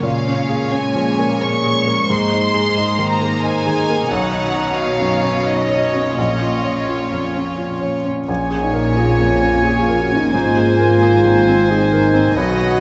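This recording has a wet recital-hall sound with a soft top end, and it is cut from a longer piece of cinematic, emotional film score for orchestra. It is moving and sorrowful, in Bb minor and 3/4 at 88 BPM with a rubato feel. A dark, woody violin section carries the melody with vibrato and a distant, lush tone. Beneath it, a second violin section plays a floating second line, while a clear, polished grand piano with audible action noise, a background viola section and a very quiet, ringing harp's fingerpicked arpeggios fill in the accompaniment. An intimate cello section holds the bass. At 8.3 seconds a roomy clarinet, a cor anglais with light vibrato and a rich double bass section join, and from 8.6 seconds a mellow French horn section adds sustained chords over harmony moving from Bbm7 to Abadd9.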